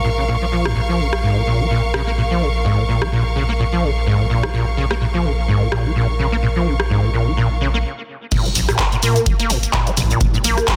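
A dense, heavily limited modern mix with light reverb carries this playful, raw acid house cut at 127 BPM, swung on the 16ths and sitting on B-flat minor. A squelchy, resonant sawtooth acid bass riff with overdrive, chorus and tape echo runs under a filter sweep alongside a round sine sub bass and a lush, bowed symphonic string section, both pumping to the sidechain, while a punchy analog drum machine recorded in a large room brings cabasa, handclaps, hi-hat, rim click, toms, crash and a soft-clipped snare from 0.7 seconds. The strings fall away with a stop at 7.8 seconds, and the drop lands at 8.3 seconds with a deep electronic kick.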